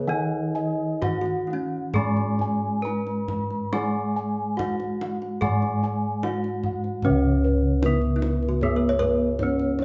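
A bright, up-front bronze metallophone struck with a horn mallet carries the melody in this short, ceremonial Javanese gamelan excerpt in slendro tuning, over a dark, smooth second line on woody kalimba, a lower metallophone accompaniment with shimmering beats from its paired tuning, soft padded-disc metallophone and close-miked bossed-gong arpeggios, mellow round bossed gongs in the bass, and deep kendang entering at 0.6 seconds, all played live in one room with a large studio reverb and a shift to a new section at 7.0 seconds.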